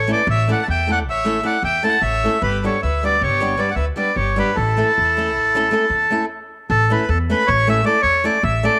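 In a straight 11/8 at 308 BPM counted in eighths, this exuberant, festive Balkan wedding-band excerpt in A mixolydian sets a reedy, up-front accordion melody over a clear, lightly vibrato violin second line that drops out at 6.3 s, a woody, thumpy pizzicato upright bass, and bright fingerpicked flamenco guitar with audible finger squeak, moving through A, G and back to A in a moderate spring reverb before a brief stop leads into a new section at 6.7 s.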